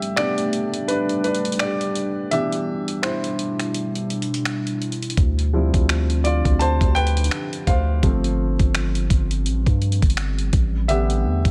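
A close, up-front mix sits in light reverb, giving this moody, sensual contemporary R&B fragment an intimate feel at 84 BPM in 4/4, with a 16th-note swing in D dorian. A warm grand piano carries a solo across the full 11.5 seconds, its short-sustained chords ranging from B2 to A5 over a progression that moves from A9sus4 through Cmaj9, Dm11 and G7sus4 before returning to A9sus4. Beneath it, a dark ambient pad of detuned, wave-folded and ring-modulated layers holds slow-blooming chords, thickened by chorus and its own reverb. A sampler-style soul kit of finger snaps, hi-hat and a thumpy kick adds gritty, compressed 12-bit texture throughout. After the opening break, a long, mellow 808-style bass enters at 5.2 seconds, its deep, decaying sine tones adding weight to the close of the passage.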